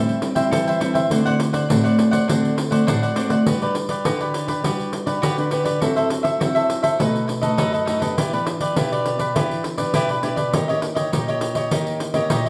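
A crisp, bright cavaquinho is picked up front in this festive, joyful samba and choro passage in G major at 102 BPM, alongside a small, warm fingerpicked nylon-string guitar, with a jingly, close and dry pandeiro played with soft hands entering at 0.1 s. The trio plays live together in one large studio room with a wet reverb, tuned slightly high at A4 = 444 Hz. A short opening moves from Am7 to D7, and at 3.5 s a longer stretch unfolds through Gmaj7, F#m7b5, B7 and Em7 before touching Eb7, cut from a longer piece.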